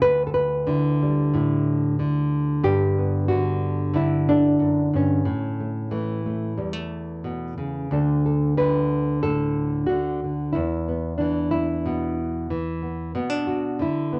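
Set in a wet club reverb, this gentle, nostalgic folk passage at 92 BPM in D major features a solo nylon-string guitar, dark, full-bodied and thumb-plucked with a deep classical tone sitting up front, moving from Dsus2 through G and A before shifting at 7.9 seconds to D, E5 and Bm in a brief cut from a longer piece.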